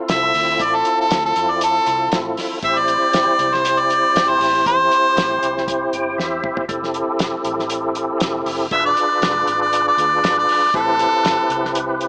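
A straight-eighth soul blues groove with a faint sixteenth-note swing drives this brooding, soulful excerpt, carried by a cloth-damped, thuddy drum kit with a fat snare and tight kick, and a dark, round, foam-muted electric bass sitting low in the mix. Up front, a bright, overdriven harmonica sings the melody with light vibrato and scooped notes, then pauses while a percussive tonewheel organ, with a touch of grit and turning through a slow rotary speaker with chorus vibrato, steps forward with a fill at 5.7 seconds, joined briefly by a drum fill, before the harmonica returns at 8.7 seconds. Light reverb and a small-speaker sound give the recording an intimate, vintage character.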